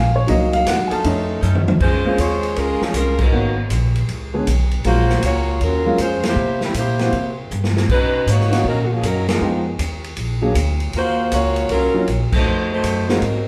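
Big band swing in Bb minor at 158 BPM, this joyful, brassy excerpt swings in 4/4 and opens with a brief baby grand piano solo before the band settles in. A woody, thumpy upright bass sits up front under the piano's natural comping, while a swinging big-band drum kit, distant and roomy with dark cymbals and a boomy kick, drives the groove and drops in fills around 1.4 and 7.5 seconds. A bright saxophone section with light vibrato briefly sustains chords near the start, and then a clear, close-miked saxophone section takes the melody from 1.8 seconds onward, its vibrato singing over the rhythm section. Band accents punctuate the line at regular points as the harmony moves through rich extended and altered chords such as Bbm9, Gbmaj7, Bb7alt and F7b9. A wet large-studio reverb places the ensemble further back in the room, and the passage is cut from a longer piece.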